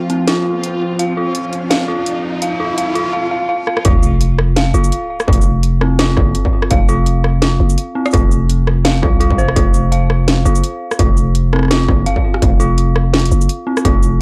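Swung half-time drum and bass at 168 BPM in 4/4, this cinematic, spacious excerpt opens with a tense, string-like detuned drone and a very quiet reversed, dreamy swelling texture beneath an eerie, inharmonic synth bell arpeggiating through a filter sweep with chorus, vintage 12-bit sampler coloring and analog delay, while a riser and sub drop and an overdriven electronic kit of cracking snare, bright hats, rim click and shaker build to a fill; the drone and texture fall away at 3.1 s, and at 3.9 s the drop lands on an impact with a distorted, tape-warm kick and an up-front, growling, buzzy 808-style bass, the whole recording dry and gritty with a cassette character.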